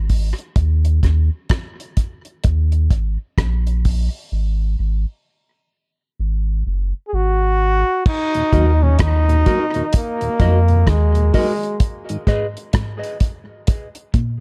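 A dark, warm production with small-room ambience frames this heavy, spacious dub reggae excerpt, cut from a longer piece and carried by a swung sixteenth-note feel. A deep, round sine sub bass sits up front beside a dry, damped 70s drum kit of tight kick, rim click, hi-hat and dusky crash cymbal, its top end rolled off. At 7.1 seconds a brilliant trombone steps forward as the pop-styled solo voice, full of vibrato and trailed by tape echo. Moments later the backdrop fills out. A mellow tonewheel organ with key click and slow rotary speaker sits in the background. One fingered electric guitar adds a chorus-tinged, echoed accompaniment, while a clean second guitar plays a low riff through tape echo. The bass stops at 11.3 seconds, and the drums and the riff guitar carry on through the closing break to the end.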